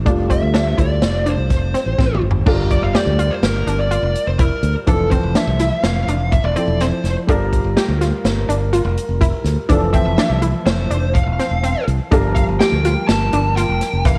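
Recorded at home on cassette, this passage has a small-room ambience with light reverb, and the piano, pluck synth, drums and lead guitar all carry a tape-worn character. It is an intricate, bright progressive instrumental in 5/4 at 124 BPM with a straight feel, cut from a longer piece and moving between Fadd9, Gm7 and Fmaj7. A swinging big-band drum kit sits up front with a punchy kick, a medium-tuned snare, hi-hat, toms and crash cymbal, its airy, polished hall tone marking a short fill at 2.0 seconds before the second section begins at 2.5 seconds. A modern fingered electric bass, growly and direct, holds the low end, while a dark, mellow concert grand piano provides accompaniment underneath. An analog pluck synth built from sawtooth and pulse waves, detuned with a noise layer and chorus, spins round, quick-decaying arpeggios. Over the top, a compressed fuzz lead guitar, picked and distorted with tape echo, carries the melody from 0.3 seconds onward.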